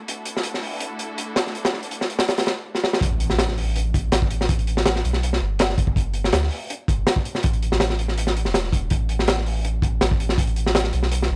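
A clear, lush string ensemble opens this frenetic, atmospheric drum and bass cut, its bowed chords carrying vibrato and a touch of vintage 12-bit sampler grit. A crunchy breakbeat kit comes in almost at once, sitting up front with a punchy kick, a high-tuned snare and hi-hats that sound dark, saturated and rolled-off on top, all heard in a small, dry room with a gritty hardware character. A drum fill at 2.7 seconds leads into the drop at 3.0 seconds, where the strings stop and a soft dub sub bass takes over the low end, deep and round with a fast attack and the color of tube saturation. A very quiet electronic impact marks the arrival of the drop. The jungle feel stays frenetic and straight through the rest of the passage, with the breaks and sub bass carrying the energy.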